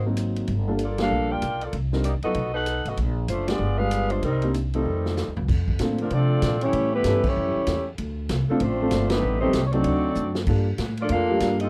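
An up-front mellow saxophone section carries the melody over woody pizzicato upright bass, intimate concert grand piano with audible action noise, and a distant, roomy drum kit with dark cymbals in this joyful big-band swing excerpt at 192 BPM in Bb major, with band accents at 1.0 and 7.2 seconds, a drum fill at 4.9 seconds, and a soft-attack trombone section joining in the background on a second line at 4.7 seconds.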